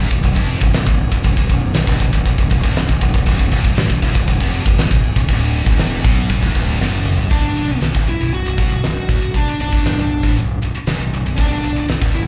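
Hard rock with a driving, aggressive mood, heard as a live gig through the venue's PA with club reverb, cut from a longer piece. A heavy high-gain guitar, bright and double-tracked, picks a low distorted riff from the start, while a fingered electric bass adds a growly, fuzz-laden overdrive and sits up front beside it. A huge arena drum kit enters at 0.1 seconds with a fat snare, punchy kick, crash cymbal, hi-hat and toms, ringing in a big room and closing the opening stretch with a fill at 6.8 seconds. At 7.3 seconds a dark, smooth lead guitar takes up the melody, its overdriven, picked tone carried by slapback echo and analog delay. The whole stays on a single B minor chord throughout.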